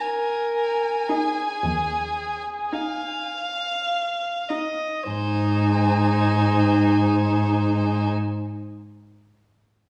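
A focused, smooth-topped violin carries a tender melody with vibrato above a second bowed violin line in this romantic classical string-quartet movement in a rubato 12/8. An expressive viola with portamento joins at 1.1 seconds, and a distant cello bass enters at 1.6 seconds, while the opening slows down and the whole sound sits in a wet recital-hall reverb on worn, warbling cassette tape.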